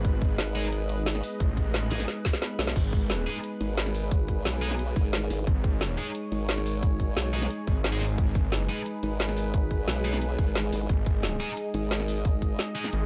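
A straight 4/4 drop of dark, tense, futuristic technical drum and bass, cut from a longer piece, driven by a tight, up-front electronic kick and a layered kit with a woody snare, metallic hats and crash, plus a fill from 2.1 s, while a thick detuned saw bass and a saturated formant-sweep wobble bass growl beneath bright, scooped high-gain guitar stabs with delay, an evolving resonant pad pumping under its chords, a blurred granular cloud pad drifting in the background until 2.8 s, and a brief electronic swell at 13.0 s.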